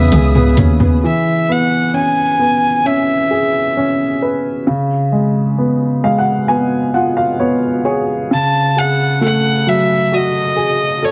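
A biting, up-front violin melody with light vibrato and a woody, polished upright piano open this tender, hopeful 66 BPM pop ballad in E major, cut from a longer piece, briefly joined by a deep house drum fill on hi-hat and toms, a worn, slightly out-of-tune tine electric piano bass with ensemble chorus, veiled, con sordino strings in the background and a very quiet fingerpicked nylon-string guitar, all of which drop out by 1.6 seconds, leaving violin and piano, with a piano fill from 5.6 to 8.3 seconds, under light reverb and a heavily compressed, radio-like sound.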